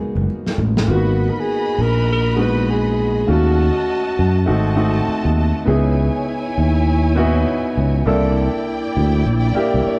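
A breathy alto saxophone with light vibrato and scooped notes carries the melody through tape echo until 4.5 seconds, then returns briefly at the very end, over an intimate grand piano whose action noise is audible. This bittersweet, silky 1970s-style soul moves at 100 BPM in 4/4 with a swung sixteenth feel, opening on G#m9 with a short drum fill of an up-front, medium-tuned snare in a pumping small room and ringing congas played with hard hands in the background. A growly, bright fingered electric bass sits up front, and a clear, focused bowed string section enters at 0.9 seconds to add a lush second line, all set in a large studio reverb with a cassette-tape character, cut from a longer piece.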